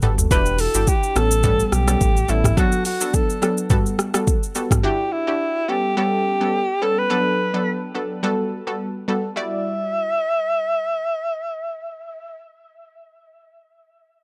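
A short drum fill from an electronic afro-pop kit opens this mellow, smooth afrobeats passage in E minor at 106 BPM, with a lightly swung 16th-note feel. The kit sits up front with a deep kick, metallic hi-hats, rim clicks, shaker and toms, while a sine sub bass with an added octave gives a full, sustained low end before dropping out at 2.5 seconds; the drums follow at 4.8 seconds. An analog pluck carries the accompaniment throughout, its detuned, warbling vintage tone rounded by chorus and bright, quickly decaying filtered notes. At 0.3 seconds a breathy alto saxophone takes the solo melody, intimate and whispered in a pop style, with vibrato, soft attacks and a smooth top. The harmony cycles through Em9, A9, Bm7 and Gmaj9 before a brief new section returns to Em9, all in a dry, close sound cut from a longer piece.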